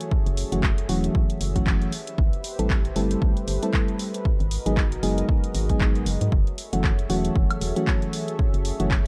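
Vinyl crackle sits over a dry, close mix with little reverb in this roughly nine-second cut from a longer deep house track, hypnotic and deep at 116 BPM in 4/4 with a 58% swing on the sixteenths, in F# dorian. An analog drum machine plays dry handclaps, hi-hat and woodblock from the start, joined at 0.1 seconds by a punchy, dry electronic kick that sits up front. A hollow, organ-like FM bass with a fast attack and dark decay enters at 0.3 seconds and pumps through sidechain. A mellow, round FM electric piano with a warbling vintage character and a faint noise layer plays stabs through chorus and dub echo, the most prominent melodic voice. Alongside it, a smooth detuned sawtooth pad with a sub octave and slow attack holds sustained chords through chorus and its own sidechain pumping, low in the mix. The harmony moves from F#m7 to Am7 at 1.9 seconds, G#m7 at 4.3 seconds and back to F#m7.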